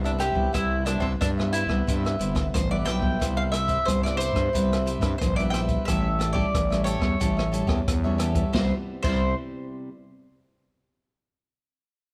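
A straight 4/4 samba and choro groove at 90 BPM in C major sets a playful, lively mood in this short cut from a longer piece. An open jazz drum kit with a boomy kick, medium-tuned snare, rim clicks, hi-hat and dark crash cymbals sits up front with a rolled-off top, alongside a growling, thick FM bass with a fast attack and sustained notes. The mandolin carries the melody with a round, double-string picked tone, up front from 0.1 seconds. A bright, crisp cavaquinho adds picked accompaniment, while a fingerpicked nylon-string guitar with deep classical body and audible finger squeak rests in the background until 9.9 seconds. The harmony moves from Cmaj7 to A7 at 5.9 seconds and back to Cmaj7, all set in a moderate recital hall reverb.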